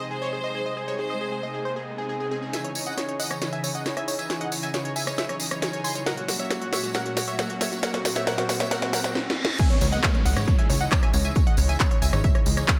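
A straight 4/4 pulse at 136 BPM drives this euphoric yet bittersweet uplifting trance passage in C# harmonic minor, cut from a longer piece. From the opening, an airy, detuned supersaw stab carries the melody with sidechain pumping and delay, over a lush, thick unison pad holding sustained chords with chorus, while a biting, up-front violin section sounds a brief second line with light vibrato until 1.6 s. A riser sets off the sound effects in the background, and at 2.5 s a tape-warm techno drum kit with a cracking snare, smooth pumping hats, handclaps, rim clicks and crashes joins a jingly, close tambourine for a build-up full of drum fills, capped by a reverse cymbal. The drop lands at 9.6 s with a heavy, up-front electronic kick and a round, chorused analog pluck adding a second line in the background, joined moments later by a punchy, funky analog bass that pumps against the kick. The chords move from G# to C#madd9 and F# before returning to C#madd9 for the drop, all within a light reverb.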